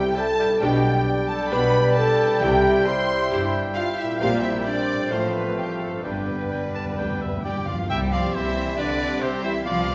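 Set in a reverberant scoring-stage acoustic, this brief cut from a longer piece is a spirited, lively romantic orchestral movement with a dramatic, fast feel in a straight 4/4. A rich, expressive violin section carries the melody with vibrato and soft attacks, while a bright, present oboe, a clear clarinet, a pure-toned flute entering at 0.2 seconds and a lush second violin section weave second lines around it. Dark, distant French horns, the most prominent part, hold sustained chords with mellow trombones behind them, as a clear bassoon and a smooth, even viola section entering at 0.6 seconds fill in the accompaniment. Cellos and woody double basses anchor the bass, and a very quiet concert harp rings out fingerpicked arpeggios across a broad range. Timpani played with medium mallets sit in the background, dropping out and returning for a fill at 6.0 seconds before the harmony settles back home at 7.9 seconds.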